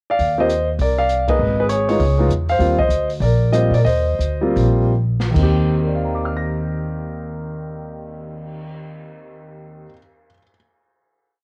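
Swinging and sophisticated, this short, complete jazz piano trio piece moves in 4/4 with a lilting swung eighth-note feel and the homely character of a home cassette recording in light reverb. The concert grand piano leads up front with an intimate, naturally resonant tone touched by plate reverb. You can hear its action noise, deep bass and long sustain as it states motif-based call phrases, partly doubled in thirds, over syncopated comping in rootless voicings through chords such as Cm11, Abm and Db. The pizzicato upright bass, woody with steel strings and also up front, plays a two-feel line beneath it. Further back, the drum kit has a small-room, tape-coloured sound with dark cymbals, a medium-tuned snare and a boomy kick, keeping time on the hi-hat with sticks while adding ride, crash and a cymbal swell. After a band accent at 1.3 seconds, the trio slows from 2.6 seconds, a drum fill leads into a final Eb6 chord at 5.4 seconds, and the piano rings on after the bass and drums have stopped.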